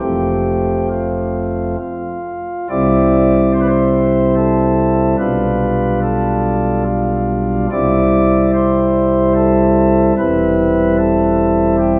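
Serene and majestic, this rubato classical chorale in 3/4 features a solo pipe organ on soft, romantic flute stops, spanning from deep pedal tones to a gentle upper line, sitting up front in a wet church reverb and colored by worn, warbling cassette tape with drifting pitch, moving from F to C, then through G7/B back to C before settling on C/E in this fragment cut from a longer piece.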